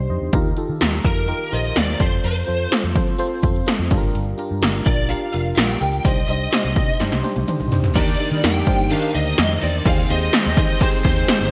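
Nostalgic and uplifting, this 1980s-style pop excerpt moves at 126 BPM in a straight 4/4, opening with a glassy, bell-like FM electric piano coloured by chorus and phaser over a round, foam-muted fingered bass, while punchy electronic pad drums with gated snare and toms and metallic hats sit up front from 0.3 s, joined at 1.1 s by a dark, overdriven lead guitar carrying the melody through an ensemble chorus. A drum fill at 7.0 s leads into a settled Eb major passage at 8.0 s, where a smooth, warbling analog pad and fat, detuned synth brass stabs enter in the background, the brass lasting only until 9.1 s, alongside a very quiet double-tracked overdriven rhythm guitar that slips in just before, at 7.9 s. The bright digital production sits in a lush hall reverb, moving through chords from Ebadd9 to Ebmaj7 and Abmaj7/Eb.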